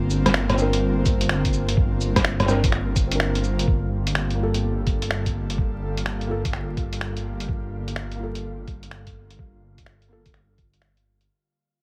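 A breathy, airy pad and a dark, rumbling detuned saw bass open this nocturnal, wistful future garage excerpt together, both pumping against the sidechain, as a lo-fi sampler-style kit of cabasa, finger snaps, hi-hat and rim click sits up front with a pitched-down, tape-warm, muffled character. A felt-muted upright piano joins at 0.5 seconds, mellow and intimate with its action noise audible, its accompaniment carrying a dub echo and the same pumping motion. A compressed, thumpy electronic kick arrives at 1.1 seconds, giving the swung groove its low weight. From 3.7 seconds the harmony settles onto Gm9 and the whole track begins to fade, while a faint wind-like tuned noise texture drifts in at 4.7 seconds, with its own built-in reverb, far in the background. Vinyl crackle and light reverb lend the mix a dusty, late-night haze.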